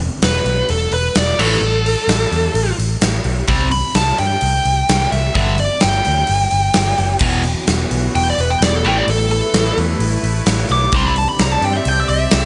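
A lightly reverberant, up-front mix with a rounded top end frames this driving, heavy hard rock passage at 129 BPM in straight 4/4, cut from a longer piece and built on E5, A5, C5 and G5 power chords. A huge arena drum kit with bright cymbals, a punchy kick and a medium-tuned snare drives alongside a growly, amped picked electric bass, while a cranked stack guitar joins at 1.4 s with a bright, overdriven picked riff. Over it all, a dark, distorted bluesy lead guitar solos with digital delay from 0.2 s, and a sweeping, detuned sawtooth pad with chorus and a slow filter swell rises quietly beneath from 7.2 s.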